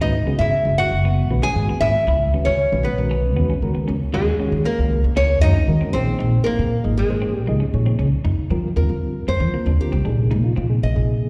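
A driving, intense jazz excerpt at 116 BPM opens with a warm, fingerpicked nylon-string guitar melody, complete with finger squeak, over a woody, growly pizzicato upright bass, a reedy electric piano with fast tremolo, a dark, clean archtop second line that stops at 7.5 seconds, and compressed semi-hollow guitar stabs with analog chorus in the background, the guitars and piano carrying slapback echo as minor eleventh chords give way to suspended chords for a nylon-string solo from 8.3 seconds, all heard live through a venue's PA in recital hall reverb.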